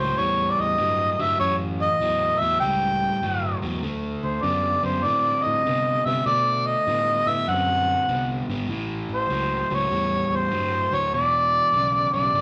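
Electric blues shuffle at 99 BPM with a swaggering, laid-back swing, where an up-front, mellow harmonica with light vibrato, tongue slaps and scooped notes takes a jazz-style solo through overdrive over a bright, crunchy picked guitar riff and a fingered bass, all moving from A7 to D7 and back before landing on E7 in a large studio room.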